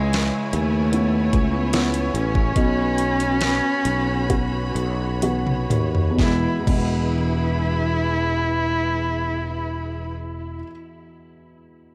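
A dark, woody cello, bowed with vibrato and trailed by tape echo, carries the tender, emotional melody of this pop ballad fragment over a soft, felt-muted upright piano, a lush, bright string section holding sustained chords, a growly, up-front fretless bass and a smooth R&B drum kit with knocking kick and metallic hats, as the music slows down into a drum fill at 5.2 seconds and the kit stops at 6.9 seconds, all heard through light small-room reverb and the warbling pitch drift of worn cassette tape.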